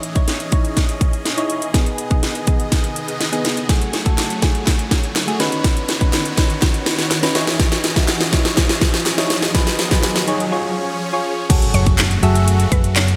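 Dance-pop at 123 BPM in F# dorian, bittersweet and driving, this bright 1980s-style digital production builds for 11.5 seconds as a punchy, up-front house drum kit with gated reverb plays a long fill, lush phaser-swept supersaw chords and soft, chorused electric-piano-like synth keys pump under sidechain, a background riser mounts and a quiet group handclap joins at 4.2 seconds; after a brief break, the drop at 11.5 seconds brings an impact, followed at 11.7 seconds by a dark, hollow-body fingered electric bass on F#2 and a woody, mallet-like synth pluck melody set in the background.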